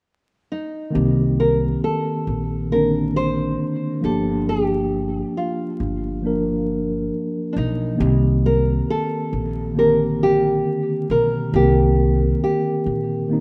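Set at a slow 68 BPM in 4/4 with a 65% swing on the sixteenths, this lo-fi hip hop fragment, cut from a longer piece, moves in C dorian with a reflective, melancholic mood. A fingerpicked nylon-string guitar carries the melody from 0.5 seconds, its deep classical tone softened by a low-pass filter. Just after, a mellow tine electric piano enters with clean accompaniment heard through its built-in speakers, also filtered. A pizzicato upright bass on gut strings joins at 1.0 seconds, woody and thumpy, sitting up front with the other parts. The harmony shifts from Cm7 to Gm7 and back to Cm7, while a moderate plate reverb and vinyl crackle give the rough home-demo mix a dusty, intimate feel.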